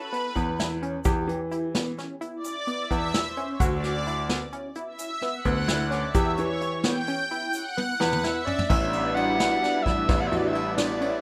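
Progressive instrumental band music in 11/8 at 259 BPM counted in eighths, this brooding, intricate passage in E dorian is cut from a longer piece and moves through E5, D69, Em and A7sus4. A lush, thick unison pad with an airy noise layer and a slow attack carries the opening as a solo feature up to 8.7 seconds. Beneath it, a tight sequenced synth drives detuned sawtooth arpeggios with a filter pluck, treated with chorus, plate reverb and tape echo. A grand piano with long sustain holds down the bass line, and a brushed drum kit with dark cymbals and a punchy kick sits up front, playing a fill from 7.8 to 8.7 seconds, while an egg shaker adds a grainy tick in the background. At 8.0 seconds a mellow soprano saxophone enters with vibrato and scooped notes, sounding distant and roomy in a jazz style, shadowed by a very quiet, metallic vibraphone ringing with slow motor vibrato. The whole has the light reverb and rough balance of a home demo.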